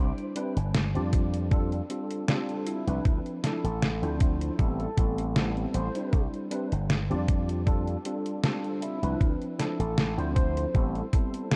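A thumpy, tape-warm electronic kick sits up front in this nostalgic, melancholic vaporwave excerpt, entering at 1.1 seconds and anchoring a slow 78 BPM in 4/4 with a light sixteenth-note swing. Alongside it, a detuned 8-bit digital drum machine supplies hi-hat and a medium-tuned snare, both sounding sampled and re-recorded in a small room. A punchy slap bass runs through an envelope filter, while a clean, sparkling tine electric piano carries the chords through ensemble chorus and analog delay, cycling through Cmaj9, F6, Dm9 and Am9 twice. At 2.7 seconds a velvety synth lead enters well behind the other parts, a mellow, wave-folded blend of sawtooth and triangle with vibrato, chorus and tape echo. The whole mix has a dark, cassette-tape character with a light reverb, giving it a hazy, faded feel.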